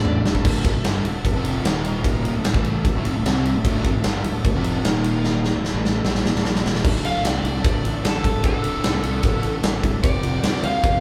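This heavy, driving hard rock excerpt opens on a drum fill from a huge, natural-sounding arena kit as the full band crashes in together at 150 BPM in a straight 4/4. The drums sit up front with a punchy kick, a medium-tuned snare, toms, crash and ride cymbals, while a fuzz-soaked fingered bass growls underneath. Two picked rhythm guitars play a low riff in the background, one sludgy and dark, the other a hollow-body semi-acoustic electric with a rounder overdriven tone, over chords moving between D minor and E-flat power chords. A thick, gritty tonewheel organ holds sustained chords further back throughout, colored by key click, chorus vibrato and a slow rotary speaker. At 6.8 seconds, after a second drum fill, the semi-hollow guitar drops out and a picked lead guitar through a small cranked amp takes a shadowy, overdriven solo over D and F power chords. The band plays live in one large studio room, and a moderate reverb gives the whole mix a big, roomy weight until the cut at 11.0 seconds.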